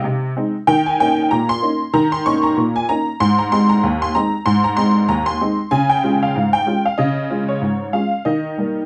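Swung sixteenths in a jaunty 2/4 at 95 BPM drive this lively ragtime excerpt in Ab major, where a solo honky-tonk upright piano, detuned, jangly and woody, sits up front across a range from Eb2 to Db6, moving through Ab, Db and Eb chords in a dark production with a moderate small-room reverb.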